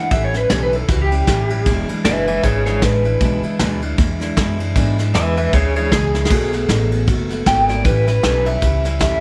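A swung 4/4 groove at 155 BPM drives this upbeat, retro rockabilly excerpt in E mixolydian, cut from a longer piece and moving through A7, E7 and B7. A twangy, slightly broken-up electric guitar through a small old amp takes a clean solo up front from the start, colored by tremolo and tape echo, over a full-bodied picked steel-string acoustic guitar with audible finger squeak and a woody, thumpy pizzicato upright bass on gut strings. A soft brush kit with dark cymbals and a punchy kick keeps time and adds a fill at 6.1 seconds, all set in a light studio reverb.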